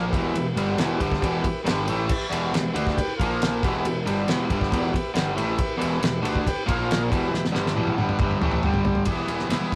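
Garage rock with a raw, gritty mood, this short cut from a longer piece drives along at 138 BPM in a straight 4/4, centred on E minor. A crunchy overdriven guitar, bright and double-tracked, sits up front with its riff from the very start, moving between Em and A#5 before a brief turn to G5 near the end. Beside it, a cloth-damped drum kit with a fat snare, tight kick and rolled-off top thuds away dry and saturated, using crash, ride and toms, and a drum fill runs from 7.3 to 9.1 seconds. Lower in the mix, a fuzz-laden picked electric bass adds growly, punchy weight, while a buzzy vintage combo organ holds clean sustained chords until it stops at 9.0 seconds. The whole performance carries the rough, roomy feel of a rehearsal-room recording with a small room's moderate reverb.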